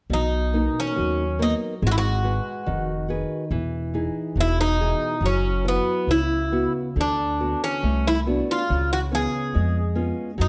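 Set in a light reverb, this short, tender and nostalgic fado-style ballad excerpt in a rubato 2/4 feel features a picked Greek bouzouki carrying the melody with a metallic, double-string shimmer and slapback echo, over fingerpicked nylon-string guitar of small, intimate tone and thumpy, woody pizzicato upright bass on gut strings, all three playing throughout as the chords drift from Bmaj7 through G#m7, Emaj7, F#7sus4 and D6 to C#7.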